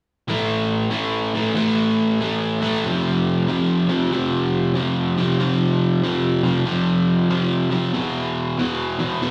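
A bright, overdriven semi-hollow electric guitar plays alone from 0.3 s, picked, double-tracked and up front in this gritty, heavy swung rock fragment, moving through A5, F5 and E5 between E2 and A3 while a moderate club reverb gives it the sound of a live gig heard through the venue's PA.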